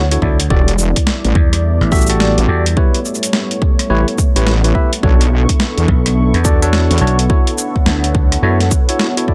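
A saturated, heavy wobble bass sits up front in this gritty, playful glitch hop excerpt at 106 BPM in B minor, entering at 0.5 s and dropping out at 7.0 s, alongside a growly slap bass. A punchy electronic kick and an overdriven boom bap sampler-style kit of snare, hi-hat, rim click and shaker drive a swung 16th-note groove, while a clean, bright tine electric piano stabs through Dmaj7, Em11, A7 and Bm7 with tape echo. Behind them, a moody analog pad with 12-bit sampler grit and a mellow ambient pad bathed in its own reverb pump with sidechain in an otherwise dry, up-front mix.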